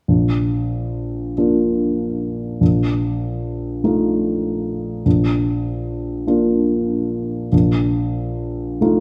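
Tender and warm, this brief classical excerpt unfolds at a slow, rubato 48 beats per minute in 6/8, settled in Bb major. A dark baby grand piano carries the accompaniment alone from 0.1 to 9.0 seconds, its mellow, vintage tone sitting up front and intimate, with the mechanical noise of its action clearly audible. The harmony rocks gently between Bb and F7 over a Bb bass, returning to Bb at 5.1 seconds before leaning back toward F7. The piano ranges from deep Bb1 up to F4, keeping the texture low and smooth. A wet recital hall reverb with a 1.6-second decay surrounds the playing, lending the close, rounded sound a gentle sense of space.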